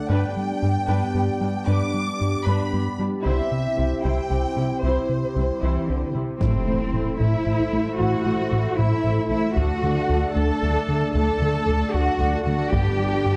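Brooding and tense, this cinematic cut from a longer hybrid orchestral and electronic film score moves at 76 BPM in a straight 6/8 in A dorian, with a focused studio violin section carrying the melody over a hollow, flute-like chorused pad, a distant viola section, a round, nasal analog bass riff and an up-front cello section with soft attack. The first violins fall silent at 6.1 seconds, and at 6.4 seconds a lush symphonic violin section takes up a second line, a distant chamber double bass section joins in the background, close and dry taiko drums enter under heavy sticks, and a huge, bright impact lands. The dark production sits in a moderate recital hall reverb, with chords moving from G through C, Am and D back to G.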